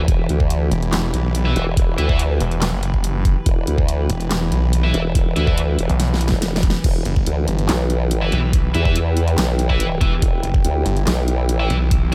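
A saturated, formant-filtered wobble bass anchors this chaotic, aggressive heavy wobble dubstep excerpt at 142 BPM in half-time E minor, joined by a growling, detuned saw bass with overdrive, over a knocking electronic kick and a dubstep kit of huge snare, handclaps, hi-hat and crash that plays a fill from 6.0 seconds, while an evolving wavetable pad holds morphing chords with chorus, phaser and sidechain pumping, a bright, scooped high-gain guitar cuts in with distorted stabs through analog delay, and a lo-fi, nostalgic, warbling tape-like pad enters in the background at 6.8 seconds, all in a dry, loud mix.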